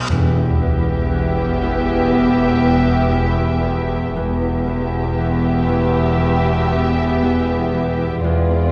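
Tense and eerie, this brief cinematic suspense cue sets a veiled, con sordino string ensemble, with a violin section carrying the high melody over a second violin line, lush background violas, cellos and a close double bass section, alongside a mellow, ringing, fingerpicked Celtic harp riff and a resonant sawtooth-and-sine drone with moving overtones and chorus, while hard-mallet timpani strike until 1.6 s and an electronic reverse cymbal and sub drop mark an impact running to 4.2 s, heard within a dark, reverberant recital hall.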